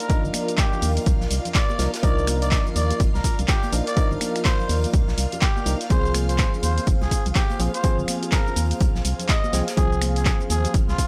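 A studio reverb gives this deep house excerpt a smooth, enveloping sheen as it moves at 124 BPM in 4/4 with a swung sixteenth-note feel, in C minor, shifting from Cm11 to Fm at 5.9 seconds. Up front, a punchy electronic kick anchors the groove alongside a dark, hollow FM bass with an organ-like, percussive attack, tube saturation and sidechain pumping. An analog drum machine supplies finger snaps, handclaps, hi-hat and shaker, while ringing bongos and congas played with hard hands sit in the background and a distant, roomy indie kit adds a very quiet hi-hat and fat snare. A nasal organ stab with lush chorus and sidechain pumping punctuates the harmony, cushioned by an airy, breathy pad and a shimmering vintage string machine of violins, both pumping behind. Over it all, a close-miked trumpet with a cup mute plays a jazz-style solo melody, veiled and raspy with light vibrato, scooped notes and a growling edge, trailed by delay.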